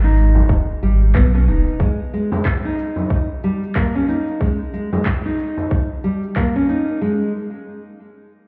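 Heard muffled as if through a wall and bathed in lush hall reverb, this mystical, warm downtempo excerpt with a light swing opens with a fingerpicked nylon-string guitar playing arpeggios over G#m, its deep classical tone carried by tape echo. A round, sine-like sub bass sits up front only until 1.7 s, while a tight, overdriven electronic kick, gritty electronic shaker and handclaps, and a large, distant frame drum fill out the groove as the harmony moves to D#sus4. By 7.0 s the drums have fallen away and the guitar rings on alone over a chordless close.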